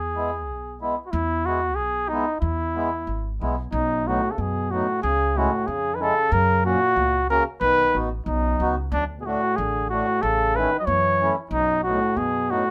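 Lightly reverberant, this festive, bouncy alpine dance-band fragment in E major moves at 93 BPM in a straight 2/4, with an up-front flugelhorn carrying the melody in a classical style with light vibrato and a smooth top, a woody pizzicato upright bass and a reedy, airy accordion underneath, and a warm euphonium second line with its own gentle vibrato joining at 3.7 seconds as the harmony travels through B, C#m, F#, D and A.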